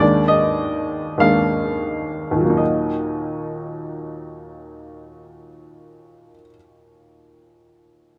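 A clear, woody upright piano, slightly detuned and up front, opens this excerpt from a romantic classical character piece on a Bb7 over Eb chord, slowing in rubato before settling onto Eb minor at 2.6 seconds, its bittersweet, brooding mood caught in 2/4 by close, detailed microphones with light reverb.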